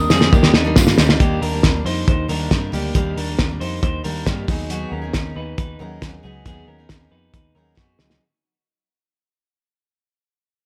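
A straight 4/4 pulse at 137 BPM drives this youthful, bright stretch of jangly indie pop in Eb major, cut from a longer piece, with a cloth-damped drum kit up front whose muffled, gritty hi-hat, tight kick and fat snare open on a fill and return to one at 7.8 seconds. A hollow, woody clarinet-like synth lead sounds a brief sustained Eb6 in the background, with chorus and tape echo, gone by 0.8 seconds, while a tambourine jingles faintly until 1.1 seconds. Underneath, a vintage foam-muted electric bass holds a dark, round low end, and a picked steel-string acoustic guitar with audible finger squeak sits back in the mix. An electric guitar through a small old amp plays twangy, slightly broken-up arpeggios coloured by vibrato and tape echo. The harmony moves from Ebmaj7 to B6 at 4.5 seconds, and from 1.2 seconds the whole track fades out in a dry sound with little reverb.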